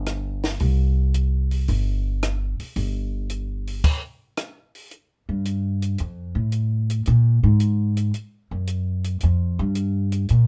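Small-group swing and bop jazz in a cool, swinging mood at 112 BPM, heard as a short cut from a longer piece and recorded dry with little reverb. A woody, thumpy upright bass with gut strings, played pizzicato, sits up front alongside a compact cocktail drum kit whose dark cymbals, high-tuned snare, tight kick, hi-hat, rim click and crash cymbal sound acoustic and natural. At 4.9 seconds the bass steps forward into a solo that runs to the end at 10.5 seconds.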